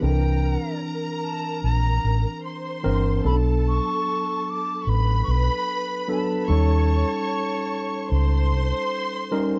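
A rough home demo in a small room carries this lush soul fragment, where a breathy, close-miked silver flute sings a straight-toned, tongued melody over a smooth, bowed string section with vibrato, a clean tine electric piano heard through its built-in speakers, and a dark, round, foam-muted fingered electric bass punching up front, all moving through C9, Bm7 and Eb7#11 with a lightly swung sixteenth-note feel.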